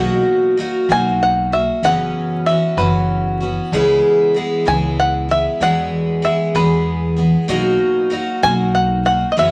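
A straight 6/8 pulse at 64 beats per minute, counted in dotted quarters, carries this hopeful, anthemic folk passage in B major, cut from a longer piece. An up-front, shimmering twelve-string acoustic guitar with octave-doubled strings picks the accompaniment through Bmaj7, F#7sus4, C#m7 and E before returning to Bmaj7, while a woody, pizzicato upright bass sits low underneath. At 0.9 seconds a twangy, fingerpicked bluegrass banjo enters up front with the melody, all set in a moderate studio reverb with a layer of vinyl crackle.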